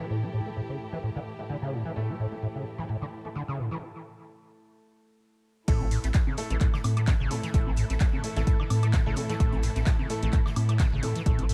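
A trippy, raw acid house excerpt at 129 BPM with a swung 16th-note feel, opening on a squelchy, resonant saw acid riff under a filter sweep, thickened by overdrive, chorus and tape echo, alongside dark, lush bowed strings that pump against the beat, vintage-gritty grand piano stabs, a breathy detuned pad that drops out at 3.8 s, and a booming analog drum machine of congas, handclaps, woodblock, metallic hats and muffled crash. After a break, the drop lands at 5.7 s with a dry, punchy overdriven kick up front, a round, deep tube-saturated bass pumping beneath it, and a very quiet, polished acoustic kit adding hi-hat and snare. The whole thing sits in an echo-heavy small-room ambience.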